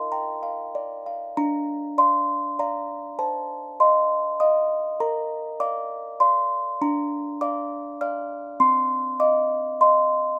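A classical lullaby scored for music box, this short passage cut from a longer piece unfolds in a gently swaying triple metre with a freely flexing, rubato feel. The mood is tender and dreamy, carried entirely by a solo music box that plays from the first moment to the last, spanning a range from C4 up to F6. Its tone is delicate and tinkling, the plucked sound of a small box that comes across mellow and dark rather than bright, and it sits slightly out of tune in a charming, fragile way. The harmony stays close to home, moving between tonic and dominant colours, with a brief opening phrase giving way at 1.4 seconds to a longer second section. Captured with close, detailed microphones and very little reverb, the instrument sounds intimate and up front, every soft note heard clearly.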